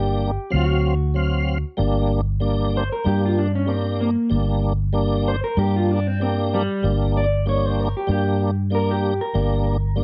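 A lightly swung 4/4 blues groove in a mournful, brooding mood, this dry, close 1970s-style studio recording is cut from a longer piece and moves from G minor to a D7#9 chord and back. A foam-muted, round fingered electric bass sits up front beneath a full tonewheel organ, lightly overdriven with chorus vibrato and a slow rotary speaker. An electric guitar through a small old amp plays throughout, its tone dark and slightly broken-up, with spring reverb, and from 1.8 seconds it takes a clean solo.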